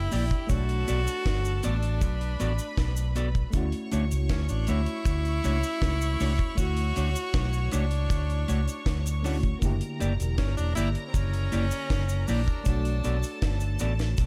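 A clear, close-miked tenor saxophone carries the melody with pop-style vibrato and a tape echo trailing its phrases, setting a tender, smooth mood in this lovers rock reggae excerpt cut from a longer piece. Beneath it, a vintage muted fingered electric bass sits up front with a dark, round, foam-muted tone, while a deep reggae drum kit, acoustic and dry with a high-tuned snare and tight kick, is dressed in gated reverb. A bright symphonic string section adds a bowed second line with light vibrato and an intense yet smooth top, and a mellow electric guitar plays clean, fingered stabs through dub echo. An FM electric piano with tremolo provides accompaniment in the background, its fast attack and decaying notes carrying a noise layer and their own dub echo, and a compressed, saturated cabasa adds percussion low in the mix. The harmony moves from Bm7 to Dmaj7, then to a tense F#7b9b13 at 9.6 seconds before returning to Bm7, all within a small room ambience in straight 4/4.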